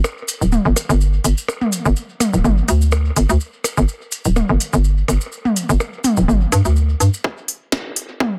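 Electronic percussion blips and toms through analog delay and grainy maracas soaked in dub echo open this cool, quirky minimal techno excerpt at 125 BPM with a light 16th-note swing. They are soon joined by a minimal click kit of clicky, low-pass-filtered hats and a tiny snare, and by a hollow, bouncy FM bass with a punchy, knocking attack and sidechain pumping that sits up front. All of it plays in a dry, echo-heavy mix until a tight, tape-warm electronic kick arrives at 7.2 s for a short build-up as the bass and maracas drop out.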